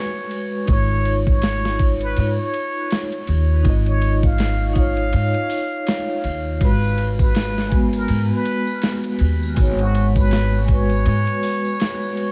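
Trip hop in a dark, cinematic vein, this swung excerpt sets a breathy, distant plunger-muted trumpet melody with 12-bit sampler grit and tape echo over mellow vibraphone chords shimmering with tremolo, a gritty, compressed soul drum kit with a thumpy kick up front, and a woody pizzicato upright bass with tube saturation, while a faint tambourine with analog delay joins at 6.6 seconds amid echo-heavy small-room ambience and vinyl crackle.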